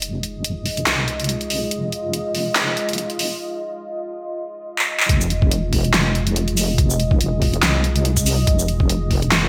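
A heavy, detuned sawtooth wobble bass sits up front in this dark, brooding deep dubstep excerpt, its resonant, compressed tone thickened by chorus and rounded with a mellow sine layer. Behind it, a deep, moody pad holds a sustained Fm7 chord, its slow attack, long release and moving notch giving it a shadowy, drifting character inside its own chorus and built-in reverb. The layered electronic drum kit keeps a swung half-time feel, with a huge snare, bright high-passed hats, handclaps and shaker, all touched with tape warmth and gated reverb. The opening build-up gives way to a break at 3.4 seconds and a short drum fill before the drop lands at 5.1 seconds, where a gritty, pitched-down, thumpy sampler-style kick enters. The mix carries a bright 1980s-style digital sheen and a lush hall reverb.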